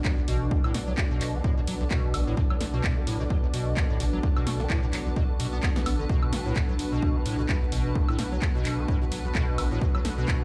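Heard through a big sound system in a bare room and washed in large studio reverb, this hypnotic, raw acid house cut rides a punchy, up-front analog kick and a drum machine of handclaps, hi-hat, short-roomed snare and woodblock over a sustained Bm7, with a squelchy, resonant square-wave acid bass riff carrying overdrive, tape echo and a filter sweep, a round sine sub bass entering at 0.3 s, a smooth detuned sawtooth pad holding chords, and a cloudy, evolving, bright granular pad drifting above, those four melodic parts all pumping to the sidechain.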